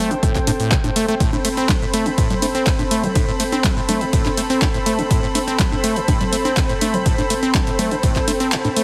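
Acid house at 123 BPM in A minor, trippy and hypnotic on a single Am7 chord, with a squelchy, resonant sawtooth acid bass riff carrying a filter sweep, tube saturation and dub echo, a mellow analog pad holding chorused sustained chords, and a cloudy, detuned granular pad drifting in the background, all three pumping against a punchy, tape-warm kick that drops out at 8.5 s, while an up-front analog drum machine adds congas, handclaps, hi-hat, ride cymbal and shaker, all under light reverb and a heavily compressed, radio-like sound in this cut from a longer piece.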